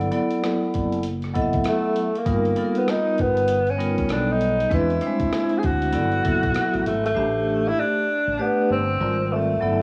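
A ringing vibraphone with a slow motor vibrato opens this smooth, cool jazz-hop cut, over a round, punchy fretless bass with lush chorus and a gritty, compressed boom bap kit of thumpy kick, hi-hat and rim click, all in a swung groove. At 1.7 seconds a breathy, whispered tenor saxophone takes the solo melody with subtone, scooped notes and vibrato, colored by tape echo, while the harmony moves through altered dominants and rich major-seventh extensions. The drums drop out at 7.2 seconds as the music shifts to a new section, leaving vibraphone, bass and sax in a cassette-tinged, intimate home-recorded haze.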